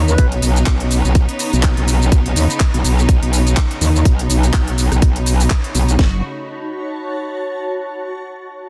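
A saturated, metallic FM wobble bass with chorus and sidechain pumping drives this aggressive, swaggering bass house drop at 124 BPM in F# dorian, over a swung, tape-warm garage kit of tight kick, cracking snare, handclaps, crisp hats, rim click and shaker, while a distant, biting string section holds sustained chords and a cloudy granular pad with built-in reverb carries on alone from 6.2 seconds to 7.9 seconds.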